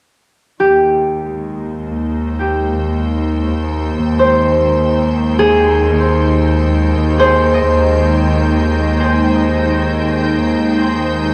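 Slow and straight in 3/4 at 50 BPM, this ambient piece drifts with a weightless, luminous calm, held on a single Abmaj7/Eb chord. A cello section plays a low Eb2 bass from 0.6 seconds, its bowed tone clear, biting and slightly nasal with an earthy edge and a touch of tube saturation, sitting up front despite a faintly distant character. A concert harp enters at the same moment with mellow, ringing, fingerpicked arpeggios that trail off into a diffuse ambient delay and fall silent at 9.3 seconds. An organ-like pad fades in from 1.3 seconds, spreading pure, bright, detuned chords with a slow attack and long release, thickened by ensemble chorus and its own reverb. A wet concert hall reverb wraps the whole texture, and the passage is cut from a longer piece.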